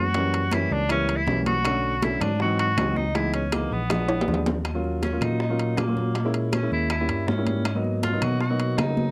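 A dry, close 1970s-style studio sound frames this sultry, sophisticated Afro-Cuban jazz fragment at 160 BPM in 4/4, where a clear, vintage tenor saxophone with vibrato carries the melody up front over an intimate concert grand with audible action noise and a clean tine electric piano playing bass through a combo amp, while ringing high-tuned congas sit in the background alongside metal-shell timbales, very quiet tight bongos and distant woody claves, a drum fill at 3.9 s leading into a saxophone solo that settles into Eb minor from 4.7 s.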